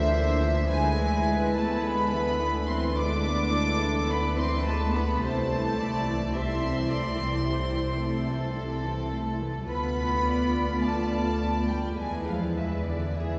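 A floating, pure upper violin line sits up front, high above a second violin section that carries the melody with a soft, sul tasto touch in this slow, solemn and melancholic romantic movement for string orchestra in A minor, taken from a longer piece. It moves at 53 BPM in 4/4 with a rubato feel. Beneath the violins, a dark, woody viola section with vibrato supplies the accompaniment, while a distant cello section and an intimate, close double bass section with light vibrato hold the bass. The strings are bathed in a long cathedral reverb heard from further back in the room, with harmony moving from Bb/D through Am/C and Bdim/D to E7 at 12.0 seconds.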